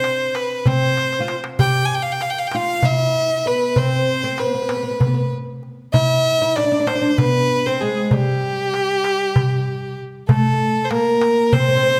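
A clear, bowed violin, a deep fretless oud and a crisp metal-shelled darbuka start together in this festive, passionate Turkish makam ensemble piece, cut from a longer performance and moving at a brisk pace in 7/8 with a straight feel. The solo violin carries the melody up front with a smooth, even tone and vibrato, while the plectrum-plucked oud plays a second line beneath it, its double strings giving a woody, acoustic resonance. The darbuka sounds close and dry under hard hands, and it breaks into a short fill at 1.0 seconds. At 10.3 seconds the piece moves into a new section, and the darbuka stops at 11.7 seconds as the violin and oud play on to the end. A reverberant recital hall surrounds the ensemble.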